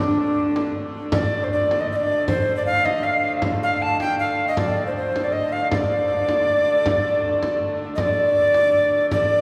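A driving triple-metre pulse at 158 BPM sets this ancient-sounding medieval dance in D phrygian, where an airy, woody tenor recorder carries the expressive, tongued melody up front with vibrato and chiff, a rich, smooth wheel-bowed hurdy-gurdy holds a steady drone beneath, and a close, dry frame drum struck with hard hands joins at 0.2 seconds, the whole cut from a longer piece and set in a wet cathedral reverb.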